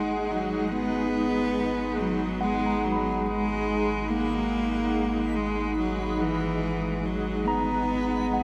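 Ambient piece at 71 BPM in G# minor, spacious and reflective, where a rich, smooth bowed cello carries the melody up front with vibrato through shimmer reverb and tape echo, a cloudy, blurred granular pad holds a G#m7 chord, a bright tine electric piano plays clean arpeggios in the background, a round analog bass fades in on a deep G#1, and from 0.3 s a very quiet reversed, dreamy texture swells into a huge, wet reverb space.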